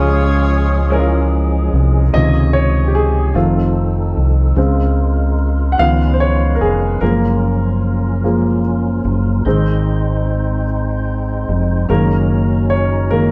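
A baby grand piano, natural-toned with short sustain and up front, carries this uplifting, soulful gospel fragment in 6/8 and takes a solo from 2.1 s to 13.3 s over chords moving from Dbmaj7 through F7, Gbmaj7 and Ab to Gb6. A mellow horn section with vibrato and a smooth top sounds the opening melody only until 1.3 s, while a fat, lightly overdriven tonewheel organ with key click, third-harmonic percussion, chorus vibrato and a slow rotary speaker holds sustained chords underneath. A round, punchy fingered electric bass sits dark and direct at the front, and the band plays live together in a large studio with moderate reverb.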